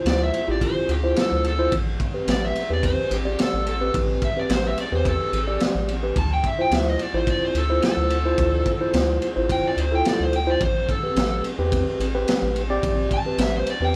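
Mournful and brooding, this 14-second excerpt of straight-eighth soul blues in A minor at 108 BPM sets an overdriven slide guitar's dark solo over a clean tine electric piano, a rubbery, hollow square bass with a moving notch, and a crunchy, saturated breakbeat kit with a high-tuned snare and tight kick sitting up front, all playing live in one room with light reverb as Dm9 and Am9 alternate.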